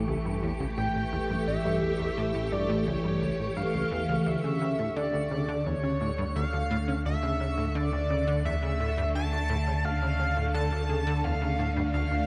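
Soaked in a dreamy plate reverb, this hypnotic, mysterious ambient excerpt in D harmonic minor at 86 BPM sets an up-front, swirling, warbling string machine with ensemble chorus and phaser holding sustained chords over a punchy, funky analog bass riff with chorus and delay and a deep, round sine sub bass, while a shimmering, retro pulse-width lead with vibrato, chorus and delay carries the melody from 0.8 s, a faint twinkling granular texture sparkles in the background, and the harmony moves from A to Dsus2 at 4.3 s.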